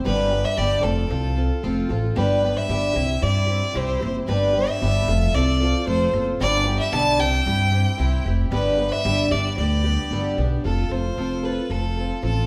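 A straight, steady 4/4 pulse carries this short folk rock and heartland rock passage, cut from a longer piece, with a hopeful, open-road mood. A picked, plugged-in twelve-string acoustic guitar sets up the accompaniment from the first moment, its boxy parlour tone shimmering with octave-doubled strings and a touch of finger squeak. From 0.1 seconds a clear fiddle takes the melody, bowed by one player with light vibrato and a focused, smooth top. An upright bass plays pizzicato underneath, its steel strings giving a woody, warm low end. The harmony moves between G, F and C before shifting to a new section at 10.6 seconds. The trio sounds like a band playing live together in one room, all three parts up front and bathed in a wet, large studio reverb.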